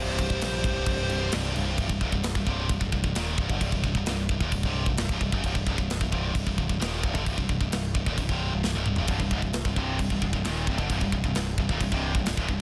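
An up-front, polished metal drum kit with bright cymbals and a tight kick drives this aggressive, relentless heavy metal excerpt alongside a bright, high-gain rhythm guitar riff and a growling overdriven bass, while two dark, distorted lead guitars, one with digital delay and one further back, voice a brief melody and second line until 1.3 seconds, and a tight background guitar adds a second riff part, dropping out at 1.8 seconds and returning at 9.1 seconds after a drum fill, all in a dense, heavily limited modern master.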